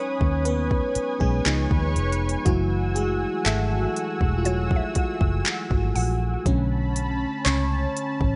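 Contemporary R&B with a smooth, romantic feel, where a glassy, bell-like FM electric piano with chorus carries the lead over a lush, detuned sawtooth pad, a woody mallet-like pluck with chorus and delay sitting in the background until 7.2 seconds, a dark, foam-muted fingered bass, and an overdriven drum kit of soft kick, crisp hi-hats and handclaps that enters with the bass at 0.2 seconds, all moving through chords from C#7sus2 to F#m9 and Bm9 in a digital ambience.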